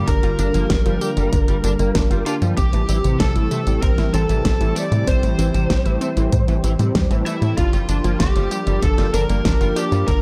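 Synthwave excerpt with a nocturnal, moody feel, where an overdriven lead guitar carries the melody over a very quiet, dreamy FM electric piano line, a thick, warbling pad pumping under chorus, bright detuned plucked arpeggios and a twangy, slightly broken-up guitar riff through ensemble chorus and delay, all anchored by a tight, up-front sawtooth sequencer bass, a punchy electronic kick and a pop kit with a fat snare, hi-hat and tambourine that enter at 0.1 seconds in a dark production with light digital reverb.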